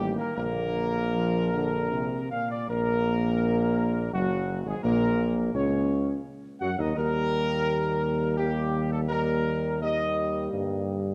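Regal and solemn, this short classical brass passage, cut from a longer piece, moves at 84 BPM in a stately 3/4, with a dark, tight trumpet section carrying the melody up front with light vibrato and a smooth top until it stops at 10.5 seconds. Behind it, a mellow French horn section and a trombone section with light vibrato sustain chords through Bb, Gb and Eb, while a clear tuba holds the bass up front. A moderate concert hall reverb gives the ensemble a spacious, dignified glow.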